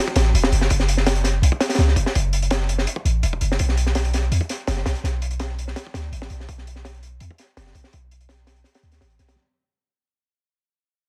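A crunchy breakbeat kit opens this dark, nostalgic drum and bass cut at 0.1 seconds, with the 808-style bass arriving at 0.2 seconds, both running to the close of the 9.4-second fragment taken from a longer jungle piece. The tempo sits at 166 BPM in a straight 4/4. The acoustic kit sounds gritty and saturated in a small room, pairing a punchy kick with a high-tuned snare and hi-hat under a rolled-off top, with filtering trimming the low end of each drum and the room. Underneath, the bass moves between E1 and E2 as a deep, boomy sine tone with a fast attack, a decaying tail and a noise layer. Both parts sit up front in a dense, heavily limited modern master with very little reverb and a coat of vinyl crackle, and the whole passage fades out across its length.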